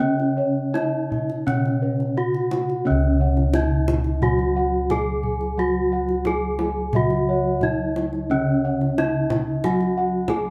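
Serene and ceremonial, this Javanese gamelan passage is cut from a longer piece and moves in four with uneven beats, shifting into a new section at 2.9 seconds. A close-miked, dry bronze metallophone carries the melody up front with ringing wooden-mallet strokes and the shimmering beats of paired tuning. Beneath it, a mellow metallophone struck with padded disc mallets plays the accompaniment, while a vintage, band-limited metallophone adds high arpeggios. Round bossed gongs struck with padded beaters trace gentle arpeggios, airy lower bossed gongs hold the bass, and a tight kendang played with soft hands runs from 0.2 to 10.4 seconds. The ensemble plays live in one room with moderate studio reverb.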